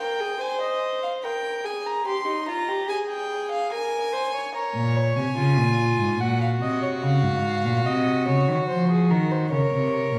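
Vinyl crackle and a reverberant, church-like hall surround this solemn, contemplative excerpt of a baroque-style fugue in Bb minor at 72 BPM, where two period-style gut-string violins sit up front, one carrying the melody with an airy, nasal bow and the other playing a reedy second line with light vibrato, before a rich, close cello enters on the bass at 4.7 seconds.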